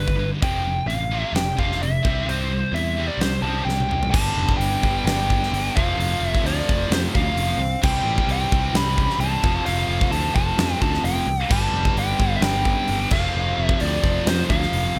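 A light reverb gives this hard rock passage, cut from a longer piece, an anthemic and energetic sheen, with a huge arena drum kit sitting up front in a hall-like space. That kit brings a fat snare, a punchy kick and bright cymbals across kick, snare, hi-hat, toms and crash, and a drum fill at 3.7 seconds leads into a new section at 4.1 seconds. A biting lead guitar carries the melody throughout, overdriven with a slapback echo. Beneath it, a heavy high-gain guitar in the background and a scooped high-gain guitar, both distorted, lay down riffs over a progression moving through F, C and G. A growly, direct picked electric bass anchors the low end. From 4.1 seconds, a double-tracked, overdriven electric guitar joins in the background with a further riff.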